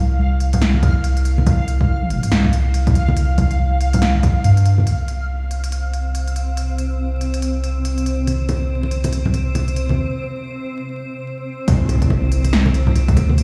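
A soft, round dub sub bass sits up front through this dark, meditative deep dubstep passage at 141 BPM, with a half-time, swung feel, joined at first by a reversed, dreamy swelling texture with built-in reverb and a punchy electronic kick that drops out at 4.3 seconds before returning. A deep house kit of punchy snare, smooth hi-hat and shaker runs throughout, while low-tuned congas with dub echo sit in the background and a cloudy, evolving granular pad enters at 6.0 seconds. After a break, the drop at 11.7 seconds lands on a background impact over a rootless Bbadd9 chord, all in a stone room with vinyl crackle and light reverb, as if played on a big system in a bare room.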